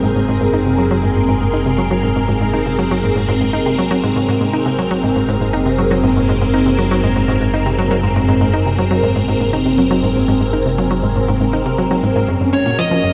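A straight 4/4 pulse at 120 BPM drives this luminous, expansive stretch of sequencer-driven space music, where a lush, phased string machine holds sustained chords over a hollow, bouncy square-wave pluck riff with tape echo and a mellow, evolving analog drone bass on Gb1, while background shaker and percussion blips fade in and a dark, fuzzed lead guitar cuts in up front at 12.5 seconds, all bathed in a huge, dreamy reverb as the harmony moves from Abadd9/Gb to Gb.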